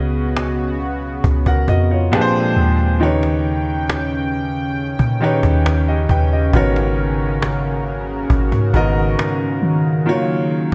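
A moderate concert-hall reverb gives this short, late-night contemporary R&B passage a spacious, moody glow, at an unhurried pace in a straight 4/4 feel. A clear concert grand piano sits up front with an open sound and deep low end, carrying the accompaniment through a chord sequence that moves from Db7sus4 through Bb13, Eb7b13 and Abm11 before settling on Ebm9 at 10.1 seconds. Beneath it, a soft 808-style bass supplies a deep, round, sine-like low end whose fast attack gives way to a dark, decaying tail. A chorused pulse-width pad holds sustained chords with a shimmering, retro character, its soft attack and sub octave filling in the space behind the piano. The cajon enters at 0.4 seconds, played with soft hands for a woody, acoustic tone with faint snares and a small-room feel, roughened by a vintage 12-bit sampler grit.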